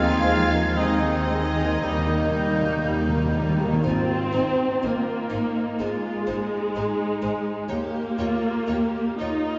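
An up-front viola section carries the accompaniment in this slow, lyrical passage from a romantic symphonic movement in Ab major, its expressive vibrato blooming in a wet church reverb at 57-64 BPM in 4/4 with a rubato feel. Above it, a rich, focused violin section sings the melody with a smooth top. A second, intimate violin section plays sul tasto with a soft attack in the background, while cellos and a double bass section give a bowed, even bass. Winds add second lines in the opening moments: an airy flute group high above, a bright, present oboe, and a very quiet clarinet with a vintage tone. Brass hold sustained chords through the first 3.5 seconds, a tight French horn section in the background and a clear, very quiet trombone section beneath, while a distant, roomy trumpet adds mellow stabs. Timpani with hard mallets enter at 1.8 seconds with an articulate fill as the harmony moves between Ab and Eb, and the strings continue through the later part of the passage.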